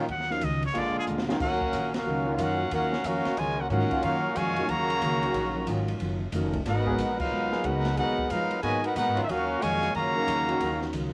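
A nasal, breathy trumpet with a straight mute opens this dramatic big band swing excerpt, whispering a brief solo over Ebm9 and Bb7 before a drum fill hands off at 1.4 seconds to a clear, up-front trumpet section carrying the melody. Set in Eb minor at a swinging 182 BPM in 4/4, the band punches accents at 1.9 and 7.2 seconds as the harmony moves from Ebm9 to Abm9 and back. A bright, close-miked trombone section plays a second line under the trumpets, while a warm trombone section holds sustained chords in the background. The woody, growly pizzicato upright bass anchors the low end, and an open jazz drum kit with dark cymbals and a boomy kick keeps the swing moving. A vintage-sounding concert grand piano with deep bass and a full-bodied, picked jumbo acoustic guitar fill in the accompaniment from behind, and the horns, piano and guitar carry a cassette tape colour, all in a small room with moderate spring reverb on this home recording.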